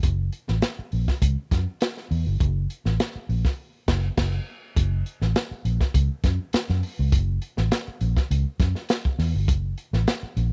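A round, foam-muted electric bass sits up front, spanning F#1 to F#2 with a dark, amped tone in this strutting, gritty funk groove at 102 BPM in F# mixolydian. A crunchy, saturated breakbeat kit plays alongside it throughout, with a tight kick, medium-tuned snare, hi-hat and dark crash cymbal in a rolled-off, close studio sound that recalls 1970s sessions with very little reverb. The band hits an accent from 3.6 to 4.8 seconds before shifting into a new section that runs to the end of this cut from a longer piece.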